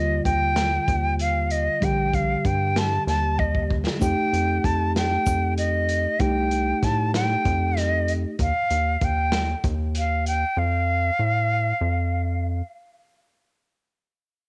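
Driving and bright, this short cut from a longer progressive instrumental in 7/8 sets an airy, up-front jazz flute melody with vibrato, cassette-tape color and an analog delay over a mellow tine electric piano that drops out at 8.4 seconds, a rubbery, hollow square bass with a resonant filter pluck, a crunchy, saturated breakbeat kit with a drum fill at 3.4 seconds, and a grainy tube shaker heard briefly from 4.0 seconds, all moving from Ebmaj7 to F7 and then through Eb to F in a lightly reverberant home cassette recording.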